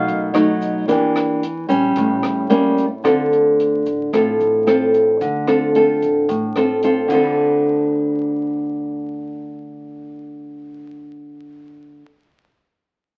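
A straight bossa nova groove in four carries this intimate, wistful excerpt, with a dark, woody, fingerpicked nylon-string guitar up front, a growly pizzicato upright bass in the background, and a dry cocktail drum kit of dark cymbals, punchy kick, rim clicks and hi-hat beside a very quiet, grainy tube shaker, until the drums stop at 7.2 s and the shaker at 7.5 s, leaving guitar and bass in a small, wet room beneath the crackle of a very old 78 record.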